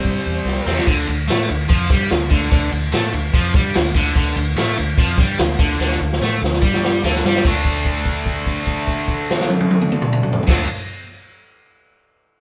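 A straight 4/4 groove at 146 BPM drives this heavy, gritty blues rock power trio and southern rock passage in D minor, cut from a longer piece, with a punchy, up-front vintage acoustic drum kit and a round, foam-muted fingered bass underneath. A dark, nasal lead guitar with a parked wah and overdrive sounds a brief note that stops at 0.7 s, while a bright, scooped, double-tracked distorted guitar riff carries the piece. After a drum fill at 5.8 s, the music moves to a held note from 7.4 s, all played live in one small room with moderate reverb.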